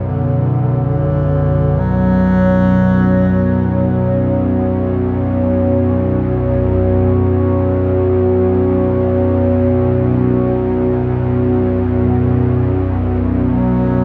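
A huge, wet reverb with a long tail surrounds this dark ambient drone, cut from a longer piece, and gives it an ominous, unsettling air. Low in the register, a bowed-like drone sustains throughout with a tense, string-like sawtooth edge, its own reverb, a ring-modulated grit and a vibrato. Above it, a dark analog pad holds moody, detuned chords on a Bsus2 harmony, its sub-octave weight softened by lush chorus and slow, sustained swells of attack and release. A mellow bass clarinet plays a short, classical-style solo melody from 0.1 to 4.1 seconds, its smooth top trailed by delay. It returns briefly at 13.4 seconds, up front against the unmoving drone and pad.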